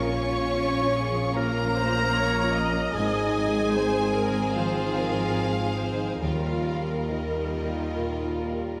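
A cinematic, emotional film score, tender and hopeful, moves in a loose, rubato 4/4 over a Bbm, Ab and Ebadd9 progression in this short cut from a longer piece. A smooth, even violin section with vibrato carries the melody, while a richer, more distant second violin line and a warm, classical-style solo clarinet in the background add supporting lines. A focused, close viola section and a deep-toned concert grand piano fill the accompaniment, ringing thumb-plucked harp arpeggios sit very quietly beneath, bowed double basses and a background cello section anchor the low end, and moderate scoring-stage reverb gives the ensemble space.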